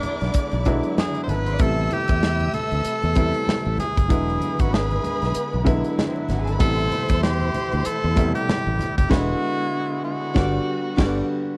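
A swung sixteenth-note feel in 4/4 drives this short cut from a longer piece of lush 1970s-style soul, bittersweet and cinematic in mood. Up front, a breathy tenor saxophone carries the melody with a clear, pop-style tone and vibrato. Beneath it, a bowed studio string section traces a smooth-topped second line, while a very quiet symphonic string ensemble holds sustained chords. A concert grand piano with a worn, present sound, deep bass and short sustain plays the accompaniment. It is joined by a punchy fingered electric bass and a warm, mid-forward acoustic drum kit with a rolled-off top, tight kick, medium-tuned snare, hi-hat and crash. Distant, low-tuned congas add faint percussion until 9.0 seconds, and at 9.1 seconds the band lands an accent that runs to the close at 11.6 seconds. Meanwhile the harmony moves between E7 and Am7 before settling on Gmaj7, all in a dry, close 1970s-style studio sound with a touch of reverb.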